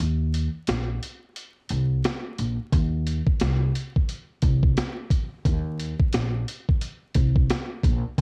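A 16th-note swing at 88 BPM in 4/4 drives this moody, gritty boom-bap hip-hop fragment cut from a longer piece, where an up-front, compressed sampler-style kit with a thumpy kick, high-tuned snare and hi-hat, run through cassette tape and re-recorded in a large room, plays throughout beside a woody pizzicato upright bass with steel strings, moving between Bb1 and Eb2, as the opening break gives way at 2.7 seconds to a new section, all in a dry home-cassette sound flecked with vinyl crackle.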